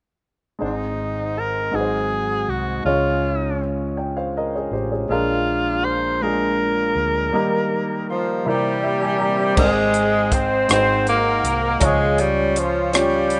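A breathy, intimate tenor saxophone carries the melody over woody upright piano, a soft flute-like tonewheel organ with slow rotary speaker in the background, and a round, dark hollow-body electric bass in this reverent yet jubilant slow gospel excerpt in 6/8 at 54 BPM in Ab major, with a distant, loose jazz-style horn section joining on the melody in octaves at 8.1 seconds, a piano fill at 8.5 seconds, and a crisp, airy acoustic drum kit with punchy kick, hi-hat, crash and rim click arriving at 9.6 seconds, the whole mix sitting in a small room with light reverb and the rough, dulled sound of a home demo.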